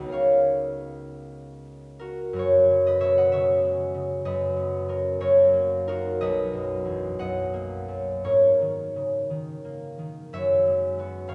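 A solo concert harp carries this dreamy, peaceful classical piece, its fingerpicked strings ringing with a warm, acoustic glow that sits up front in the sound. The music moves in a gentle 6/8 with a rubato feel, and the harp ranges from deep G#1 up to bright D#6, tuned slightly low to A4 = 439 Hz. An opening C#13 chord gives way at 2.3 s to a new passage that drifts through lush harmonies such as F#add9, Bmaj9/F#, D#m9/F# and G#m11 before settling on F#11 at 10.3 s. A moderate concert hall reverb lingers for about two seconds, and the listener seems placed further back in the room, lending the harp an airy, spacious halo. The recording is a short cut from a longer piece, lasting about 11.3 seconds.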